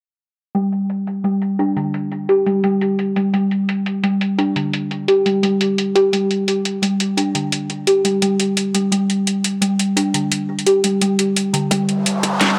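Half-time drum and bass with a spacious yet heavy mood, this short cut from a longer piece rides a lightly swung sixteenth-note feel. An up-front kalimba carries the arpeggios from 0.5 seconds, its woody, hollow fingertip plucks sounding mellow and soft, shaded by a low-pass filter and tape echo. A layered, electronic drum kit with a cracking snare and metallic hats sits close in the mix, re-recorded in a small room and filtered at both ends. Filter sweeps move across both the kit and the kalimba through most of the passage. Near the close, a tight electronic kick arrives at 11.7 seconds and an electronic riser follows at 11.9 seconds, all captured in a dry, gritty hardware recording with little reverb.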